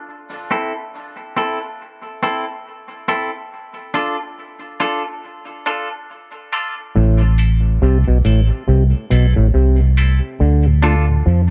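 Spacious and deep, this dark-toned reggae excerpt at 70 BPM in A minor, with a swung sixteenth feel and light reverb, opens at 0.5 s on a bright, twangy, clean picked electric guitar up front with dub echo over Am and Dm chords. At 7.0 s it is joined by a round, punchy, foam-muted fingered bass and an overdriven, stringy auto-wah clav riff, and at 7.2 s a mellow, flute-like tonewheel organ with chorus vibrato and slow rotary speaker settles in the background, while a filter sweep runs from 3.5 s to 10.4 s.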